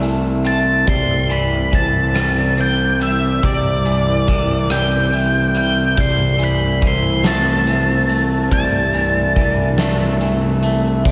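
Moving at a slow 47 BPM in a straight 6/8, this brooding, cathartic post-rock excerpt in A minor is driven by a big rock drum kit with a punchy kick, fat snare, rim clicks, hi-hat and crash cymbal, sounding as if played in a bright stone room. Up front, a fuzz-laden picked electric bass holds a low C, its overdriven tone gritty and punchy. An octave-fuzz lead guitar carries the melody from 0.5 to 10.2 seconds, dark and distorted, with slapback echo and analog delay trailing its notes. Further back, a twangy, scooped clean electric guitar picks arpeggios through vibrato, slapback echo and analog delay, while a vibraphone struck with hard mallets rings out metallic arpeggios high in the register, its slow motor vibrato giving a smooth shimmer. Beneath it all, a very quiet granular cloud pad sustains blurred, evolving chords that move from Am/C to Cadd9 and back to Am/C at 6.0 seconds, and a lush hall reverb gives the whole an arena-sized scale.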